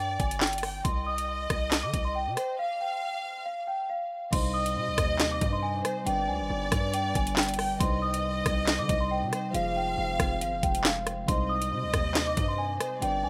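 A half-time drill beat at 138 BPM in C harmonic minor drives this dark, cold hip hop excerpt, with an up-front electronic drum kit of knocking kick, sharp snare, metallic hats, handclaps, rim clicks and crash over a punchy, heavy 808-style bass; a bell-like large celesta carries the filtered, delayed melody above a lush bowed violin section with vibrato, a break arrives at 2.6 seconds, and from 4.3 seconds a mellow tine electric piano joins, followed at 4.7 seconds by a very quiet glassy FM pad with a slow attack, all in a rough, dry home demo mix.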